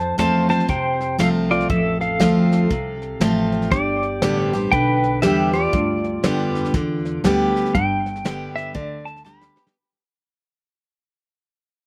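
Honky-tonk and classic country at 119 BPM with a nostalgic, down-home swing, this short excerpt moves from F to G while a clean, compressed pedal steel carries the melody with fingerpicked slides, volume swells and slapback echo, over a full-bodied, up-front picked dreadnought acoustic guitar. A woody, thumpy upright bass on gut strings and a soft brush kit with a punchy kick and rolled-off top fill out the dry, close sound, which fades out from 7.7 seconds as a drum fill arrives at 9.3 seconds.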